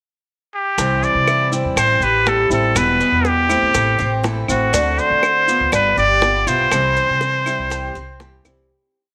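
Latin Cuban son in the guajira style at 121 BPM in C major, a short, danceable piece in which a nasal, straight-muted trumpet with vibrato sings motif-based jazz phrases up front from a pickup at 0.5 seconds, over a fingerpicked and strummed flamenco guitar with muted slaps, a metallic, double-strung Cuban tres picking an arpeggiated guajeo in the background, a dark, thumpy pizzicato upright bass on a syncopated figure, tight high-tuned bongos in steady eighths, grainy maracas, and woody claves that join at 1.3 seconds with a two-bar time line, the group set in a moderate echo chamber before a fade-out from 6.7 seconds.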